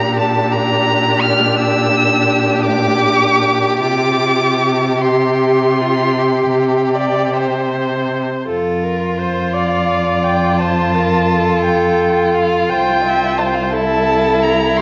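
Lyrical and tender, this slow romantic movement for string quartet unfolds in a rubato 12/8 as a single bowed violin sings a focused, vibrato-rich melody high above a smooth, even second violin line and a warm viola accompaniment played with vibrato. The cello anchors the bass up front with expressive portamento, all four players heard throughout this short cut from a longer piece, which moves from its opening harmony on Gm/Bb into a new section at 8.5 seconds that settles on F. A moderate recital-hall reverb surrounds the quartet, while worn cassette tape lends a warbling pitch drift and a dulled, muffled top.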